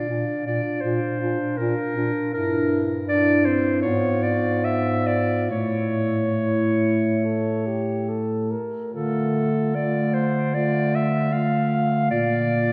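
Classical chamber music for a single-reed quartet, elegiac and solemn, unfolding in a rubato 4/4 over a harmony that moves from Bb through a diminished chord to A before reaching D minor, in this short cut from a longer piece. A clear, present clarinet carries the melody up front, while a dark alto saxophone with light vibrato and a soft attack shapes a smooth second line. A dark, distant clarinet supplies accompaniment, and a mellow bass clarinet, entering at 0.1 seconds, anchors the bass, all set in the long, wet reverb of a church.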